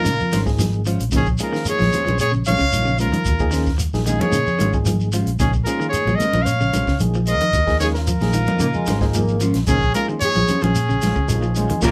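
A straight 4/4 afrobeat groove at 112 BPM in Bb minor, cut from a longer piece, rests on a single Bbm9 chord and a round, fingered electric bass, with a dry cocktail kit (high-tuned snare, punchy kick), congas and a grainy shekere entering at 0.1 seconds. Over it, a bright trumpet leads up front with vibrato, joined by an intimate, breathy alto saxophone on a second line. Beneath them sit a barky reed electric piano with overdrive and fast tremolo, twangy arpeggios from a guitar at the edge of break-up, and phased stabs from a dark semi-hollow guitar, while a raspy, growling bass trombone joins at 8.6 seconds, making the live-room sound feel intense and defiant.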